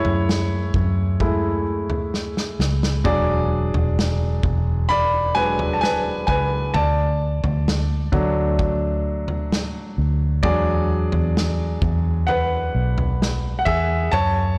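A straight 4/4 pulse at 65 BPM carries this hopeful, tender pop ballad, cut from a longer piece, where a clear, polished baby grand piano plays up front as the solo voice over a dark, round, foam-muted electric bass and a natural acoustic country drum kit with a punchy kick and medium-tuned snare that breaks into a fill from 2.1 to 3.1 seconds, the harmony moving through F#m7, E7, D and E7 inside a moderate concert hall reverb and a blown-out, overdriven recording.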